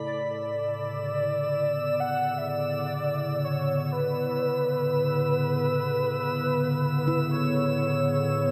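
Ambient in free time with a weightless mood, this excerpt sets a velvety, detuned synth lead singing a melody with vibrato over a warbly, nostalgic tape-like pad holding a Bmadd9/A chord, while a drifting glass-harmonics texture floats high above and a ringing handpan enters in the background with arpeggios at 7.1 seconds, all bathed in a huge reverb.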